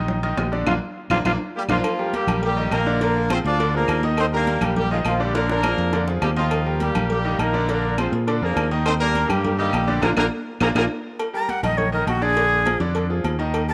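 Set in a light studio reverb, this sunny, danceable salsa excerpt rides on a round, up-front fingered electric bass and a bright grand piano with audible action noise, over ringing high-tuned congas, quiet low-tuned bongos and cowbell, metal-shell timbales with agogo bells, and woody claves, as a raspy growling trombone punches in at 0.7 seconds before a smooth-topped horn section in octave doubling carries the melody from 1.6 seconds, and a breathy, reedy jazz flute with tongued chiff takes a solo from 11.4 seconds.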